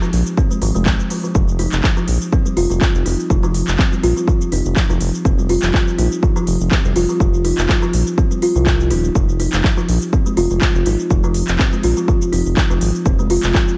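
A lightly swung, driving afro house groove opens with a woody, hollow-toned kalimba whose airy arpeggios pump to the sidechain and ring out through dub echo, alongside a smooth-hatted afro-pop kit of cabasa, handclaps and hi-hat. A deep, round analog bass that also pumps arrives a moment later, followed by a punchy, up-front electronic kick, with a single minor chord dropping away at 1.4 seconds in this short cut from a longer piece.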